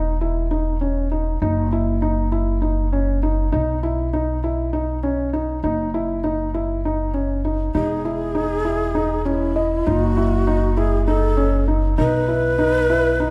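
Set in a straight 7/8 at 198 BPM counted in eighths, this contemporary chamber piece in F# dorian has a hypnotic, restless pull from its uneven meter. A felt-muted upright piano spins soft, intimate arpeggios in the middle register, its thick felt lending a muffled, mellow tone, while a pizzicato upright bass on steel strings anchors the low end with a woody, thumpy pulse. The harmony moves through C#madd9/E, F#5, B, Emaj7 and F#m7, giving the cycle an open, searching quality. At 7.7 seconds a breathy shakuhachi enters as a second line, its bamboo voice hollow and airy, with tongued attacks, a touch of chiff and gentle vibrato. All three instruments sit up front in a dark, warm production, bathed in a moderate scoring-stage reverb that adds depth to this excerpt from a longer work.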